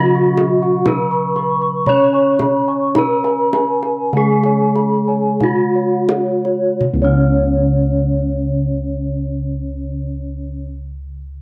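Serene and ceremonial, this slow Javanese gamelan passage of 41 to 65 BPM in 4/4 comes from a longer piece and eases down in tempo over its first 6.8 seconds before a new section begins. A bronze metallophone carries the melody up front with a ringing, wooden-mallet attack and shimmering paired-tuning beats, while a second metallophone plays a close-miked, dry, full accompaniment and a third adds dark, smooth arpeggios with padded mallets. Bossed gongs play boxy arpeggios and an airy bass in the background, and a tight, saturated kendang played with soft hands sounds from 0.4 to 7.5 seconds, all within moderate spring reverb and a cassette-tape home-recording character.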